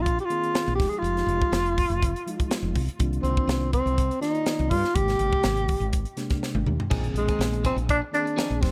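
A straight 4/4 groove at 123 BPM drives this bright, funky electric jazz fusion excerpt in Bb mixolydian, where a breathy, whispered tenor saxophone carries the melody up front over a round, woody fretless bass, a crisp kit with a punchy kick, high-tuned snare and dark cymbals that plays a drum fill at 6.4 seconds, and a mellow, flute-like tonewheel organ through a fast rotary speaker, before a clean, compressed electric guitar adds background stabs with lush chorus and tape echo from 6.9 seconds as the chords cycle from Bb9sus4 through Fm9, Cm11 and Abmaj9 in a small room.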